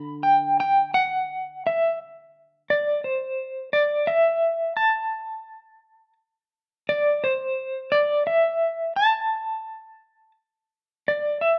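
Folk in a slow 6/8 at 58 BPM, counted in dotted quarters, this fragment of a longer piece feels hopeful and nostalgic. A fingerpicked steel-string jumbo acoustic guitar opens with a single dark, full-bodied D3, sitting low in the mix and stopping at 0.6 s. A clean electric guitar carries the melody from the start to 11.6 s, fingered and placed up front, its warm tone shimmering with tremolo as it moves between C5 and B5. The opening builds for its first 2.7 seconds before giving way to a new section that runs to the end. The band plays live in one room, and a moderate reverb from a large studio lends a roomy glow, with the instruments tuned to A4 = 442 Hz.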